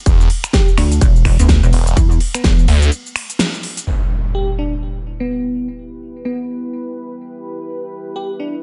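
Swaggering, bouncy bass house at 126 BPM in E minor with swung 16ths, this excerpt opens on a drop where a punchy electronic kick, a big-room dance kit with a huge snare and crisp low-pass-filtered hats, a thick, swirling phased detuned saw bass and a heavy, sidechain-pumped pluck wobble bass drive until a break at 2.9 seconds; an electronic impact then hits at 3.9 seconds as a sparkling bell-like FM electric piano with chorus, phaser and delay carries on, and a deep, moody ambient pad with reverb drifts in from 5.1 seconds.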